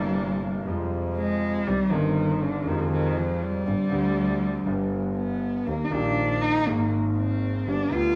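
A loose, rubato tango pulse in four drifts and breathes through this short excerpt cut from a longer piece, setting a melancholic, sultry mood. A dark, bowed cello carries the solo line from start to finish, its vibrato, soft attack and portamento giving the phrasing an expressive, smooth-topped voice that sits up front. Beneath it, a concert grand piano supplies the accompaniment with deep bass, long sustain and a slightly boxy tone, also placed close to the listener. A bowed double bass anchors the low end with a biting, earthy sound and light vibrato. The harmony moves from C7 through Fm, Cm and Fmadd9 to Gsus4 and G, then settles onto Eb and Absus2 by 6.7 seconds, all heard as a trio playing live together in one room with a wet, large studio reverb.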